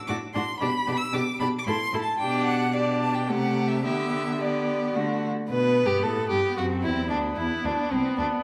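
An expressive second violin, bowed with vibrato and portamento and placed up front, sits at the heart of this cheerful, graceful classical-period string quartet movement in G major, a quick 3/4 at 112 BPM cut from a longer piece. The first violin carries the melody with a smooth, even, somewhat distant tone, while the viola fills in the accompaniment and the up-front cello anchors the bass, each bowed with vibrato and a rich body. A wet recital hall reverb surrounds the players, and at 5.5 s the music moves into a new section where G major gives way to Esus2 and a Cmaj9 colour.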